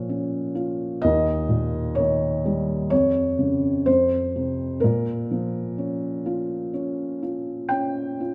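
A felt-muted upright piano, its thick-felt tone soft and intimate and placed up front, plays alone in this short, dark and melancholic classical fragment cut from a longer piece, drifting with a lyrical rubato across a range from Eb2 to G5 through a brief progression that returns to Bbm at 4.8 seconds, all set in a moderate concert hall reverb.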